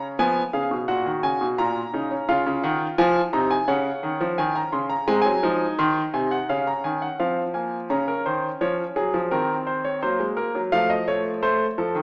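The recording places the piano up front in a wet recital hall, with a 1.8-second reverb tail heard through a small-speaker sound. This is a short passage cut from a longer baroque-style classical fugue in three parts, written for solo grand piano in a steady, straight 4/4. The mood is contemplative and solemn. The piano tone is clear, intimate, present and polished, with long sustain and audible action noise, and the parts range from A#2 up to B#5. The harmony moves through C#7, F#/A# and D#m7/C# toward G#7 before settling on C#. A second section begins at 7.9 seconds and turns to Cm7b5/Eb and F7 before the passage breaks off at 12.0 seconds.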